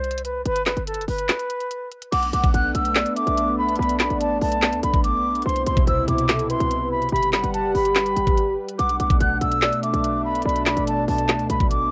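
Opening on an airy, mellow silver concert flute melody over a knocking trap drum kit with woody snare, crisp hats, handclaps and crash, a punchy sine 808-style bass and a brief break at 1.3 s, this melancholic yet hard-hitting half-time trap cut in B phrygian at 144 BPM gains a velvety, detuned synth lead with vibrato and tape echo plus a smooth analog pad on chords from Bm7 through Cmaj7 and Gmaj7 at 2.1 s, all carrying a dry, cassette-tinted home-recorded feel.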